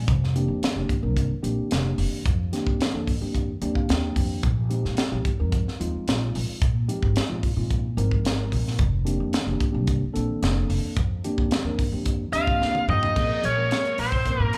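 A mellow, clean tine electric piano and a woody, pizzicato upright bass open this driving, nocturnal jazz fusion piece at 110 BPM, joined almost at once by a tight, up-front funk drum kit with a high-tuned snare, as the band cycles through F13sus4 and Bb13sus4 in a moderate studio reverb that sounds like a live room. The piano adds fills along the way, and a biting, overdriven lead guitar takes the melody up front at 12.3 seconds, with an edgy, forceful tenor saxophone playing a second line with vibrato in the background, while the drums play a fill shortly after. The harmony shifts to Bbm9 at 13.2 seconds just before this cut from a longer performance ends.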